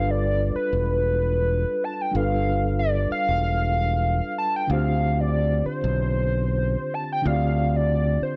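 Introspective and late-night, this brief neo-soul R&B cut moves at 94 BPM in 4/4 with a light 16th-note swing, resting on G9 before shifting to Dm7 at 4.7 seconds. A hollow, woody square lead carries the melody up front, touched with chorus, vibrato and slapback echo, while a mellow tine electric piano fills out the harmony. Beneath them a bright, punchy fingered electric bass sits up front until 8.2 seconds, all captured in a dry, close 1970s-style studio sound.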